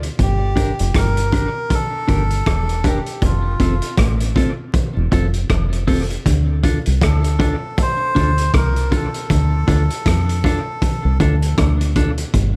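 A deep, round dub bass sits up front beside a gritty, saturated breakbeat kit of punchy kick, hi-hat and rim click and a bright, twangy clean electric guitar with tape echo, before a reedy, breathy melodica, also carrying tape echo, enters at 0.2 seconds over Gm, F and Dm in this laid-back, meditative roots reggae cut, kept dry and dusted with vinyl crackle.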